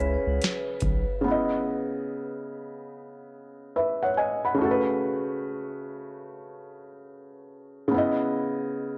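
A swung 4/4 lo-fi hip hop groove from a booming analog drum machine, with a deep kick, crisp snare, metallic hats and shaker carrying vintage 12-bit sampler grit, comes in at 0.4 seconds. It stops at 1.1 seconds along with the round, soft dub sub bass and the ringing vibraphone, whose slow motor vibrato and tape echo sit in the background. From there the felt-muted upright piano, intimate and mellow with audible action noise and a low-pass filter, carries this reflective, hazy excerpt alone until 9.0 seconds, moving between C#m9 and A6/C# chords under light digital ambience.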